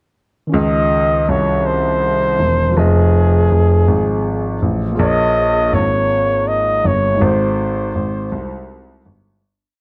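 A sultry, late-night R&B verse in a slow 6/8 at 54 BPM opens at 0.5 s with a barky, lightly overdriven tine electric piano holding spread chords with grace notes over a worn, long-sustaining baby grand piano playing a sliding bass line with chromatic approach notes, while from 0.6 s a breathy, whispered flugelhorn with vibrato and slapback echo carries an intimate, motif-based jazz melody of call phrases through Dbmaj9, Fm7, Bbm7 and Ab7b9 before the dark, lightly reverberant production fades out from 7.2 s.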